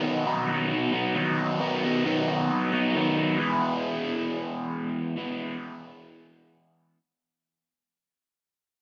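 A lone electric guitar opens this short rock fragment, cut from a longer piece, with a raw garage edge: bright, overdriven and picked, double-tracked and placed up front. The mood is carefree yet wistful, moving at 134 BPM in a straight 4/4 feel in E major. A phaser colours the guitar's tone as it plays across a range from B2 to E4, sitting on a B chord before settling onto E at 3.4 seconds. That change opens a second section, and from that point the sound fades out until the guitar stops at 7.0 seconds. A moderate plate reverb with a long 3.4-second tail surrounds the playing and lends the lone part a sense of space.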